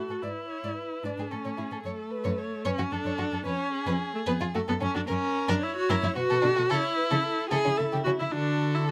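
In a flexible triple metre with rubato stretching the beat, this quick classical-period movement for string quartet carries a stormy, restless mood through a short passage cut from a longer piece. The first violin sings the melody with a dark, smooth-topped tone, bowed with vibrato, gentle attacks and expressive portamento. The second violin traces a warm inner line nearby, also leaning on vibrato and sliding portamento. The viola stands out most, placed up front with a rich accompaniment whose soft onsets and slides give the texture body. From 0.1 s the cello anchors the bass, played sul tasto with light vibrato and an airy, intimate bow sound. The harmony turns through F-sharp minor and F#7 before settling back on A and reaching D at the close, captured by detailed microphones in light reverb.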